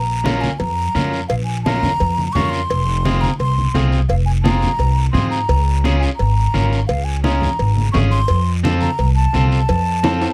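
This is a passionate, danceable cumbia in 4/4 at 172 BPM, a short cut from a longer piece that moves through Bbm, Fm, Db and F. A breathy concert flute carries the melody, tongued and expressive with vibrato and lifted highs. The upright bass sits up front, plucked pizzicato with a woody tone, while an electric guitar, twangy and slightly broken-up, picks out accompaniment from 0.2 seconds. Low-tuned congas played with soft hands add a thick-skinned warmth, joined by a raspy guiro and, from 0.6 seconds, ringing metal-shell cowbell and timbales. The sound is a dry, close 1970s-style studio recording with little reverb, and a drum fill arrives at 10.0 seconds.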